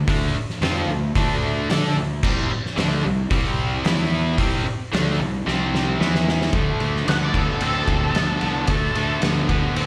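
A straight 4/4 groove at 111 BPM drives this swaggering, gritty slice of blues rock power trio and southern rock, cut from a longer piece and heard as a live gig through the venue's PA with a touch of club reverb. The oversized, low-tuned drum kit sits up front from 0.1 s, with a punchy kick, fat snare, dark cymbals across crash, ride and hi-hat, and a saturated, stone-room character, and it lands a fill from 5.5 to 6.5 s. The cranked stack guitar carries the riff from the start, a bright, double-tracked, picked sound pushed by overdrive and a slapback echo, moving through power-chord changes on D, C and E. Underneath, the fingered electric bass growls with fuzz and overdrive, direct and amped. At 7.1 s an octave-fuzz lead guitar cuts in for a brief solo phrase, its distorted tone shaded by wah, before it drops out at 9.2 s as the riff rolls on.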